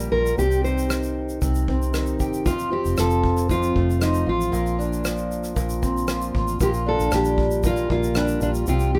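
A fingerpicked steel-string acoustic guitar opens this short acoustic pop passage together with a twelve-string acoustic guitar and a muted electric bass, with a small-room acoustic drum kit joining at 0.3 seconds. The mood is reflective and wistful, set in G minor at a steady 116 BPM in 4/4 with a straight feel. The jumbo steel-string carries the melody up front with a full-bodied tone, while the archtop twelve-string plays fingerpicked accompaniment that sounds boxy and shimmering, its octave-doubled strings catching an occasional finger squeak. Underneath, the vintage bass is foam-muted, round and dark, and the kit keeps to a punchy kick, rim click and shaker played with bundle sticks. The harmony moves through Cm, F, Bbadd9 and Gm7/Bb under a light reverb, and the passage is cut from a longer piece.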